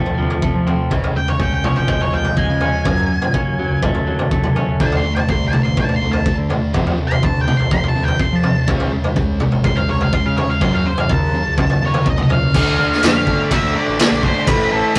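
Quiet-loud alternative rock with a dark, cathartic mood, this excerpt opens with a scooped, barely broken-up guitar picking delayed arpeggios beside a compressed overdriven guitar riff, a round, growling overdriven bass and an up-front garage drum kit with a punchy kick, dark cymbals and gritty saturation. From 1.2 seconds an octave-fuzz lead guitar, distorted and delayed, carries the melody as a solo, and at 4.8 seconds the arpeggios give way to a bright, thick fuzz guitar playing a riff in the background. The rough rehearsal-room sound has a moderate booth ambience and warm saturation, and the music shifts into a new section at 12.6 seconds.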